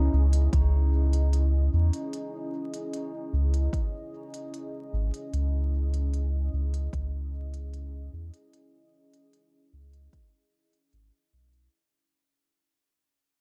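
A round, soft dub sub bass with tube saturation sits up front in this hazy, spacious ambient dub fragment at 75 BPM in C# minor, held on a single C#m chord beneath a moody, detuned sawtooth pad carrying chorus, built-in reverb and 12-bit sampler grit, while smooth, tape-warm electronic hi-hats sit quietly from 0.3 s, a layered, overdriven electronic kick enters at 0.5 s and drops out at 10.3 s, and the whole dark, crackle-dusted production fades out throughout.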